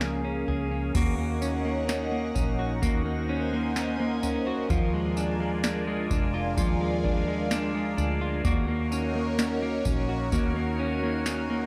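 A dry, gritty hardware sound with only light reverb frames this ethereal, hazy dream pop cut from a longer piece, moving at a slow, straight 4/4 pulse. A swirling, nasal sawtooth pad with phaser and chorus holds sustained chords throughout, its detuned, bright tone evolving over slow attacks and long releases. Up front, a clean, dark electric guitar plays fingered arpeggios touched with subtle chorus and analog delay, while a vintage muted fingered bass, round, punchy and foam-muted, adds tube-saturated weight below. A booming analog drum machine, re-recorded in a large room and placed up front, drives the groove with a deep kick, crisp snare, tambourine, toms and crash cymbal, stopping at 11.5 seconds. From 1.5 seconds a calm, glassy sine texture of drifting overtones floats in the background with chorus, its own reverb and analog delay, as the harmony moves from Db6 through Ebm7 and Bb7 before returning to Ebm7.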